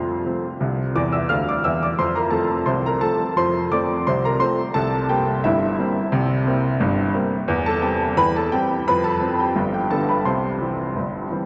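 A clear upright piano opens this cheerful, playful ragtime fragment alone, with a short fill from 1.0 to 2.0 seconds. At 87 BPM in a straight 2/4, the solo piano moves through F, C and C7 harmonies before settling into C major from 7.5 seconds, closing on a G to C cadence. Its tone is woody and worn, slightly detuned, and sits up front, ranging from G1 up to F6. A wet cathedral reverb with a 7.2-second decay places the instrument in a vast, echoing space, so each chord hangs in the air long after it is struck. The 11.5-second clip is cut from a longer piece.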